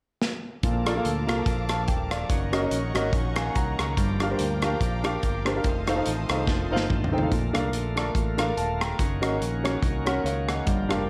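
A dreamy mix soaked in moderate plate reverb frames this uplifting, reverent uptempo gospel passage in Bb major, swinging in 4/4 at 144 BPM and cut from a longer piece. After a short drum fill, the band enters at 0.6 seconds: a punchy acoustic kit with a medium-tuned snare and a rolled-off top, up front alongside a natural-sounding grand piano that carries the accompaniment. A bright, shouting tonewheel organ holds sustained chords through a fast rotary speaker. Beneath it, a round fingered electric bass anchors the low end, while a lush, very quiet bowed string section adds expressive vibrato and portamento in the high register. At 6.5 seconds a second drum fill arrives with a brief clean, scooped electric guitar line, picked and compressed in the background with ensemble chorus, and at 7.3 seconds the strings drop out as the progression returns to Bbmaj7 and Gb6 for the closing section.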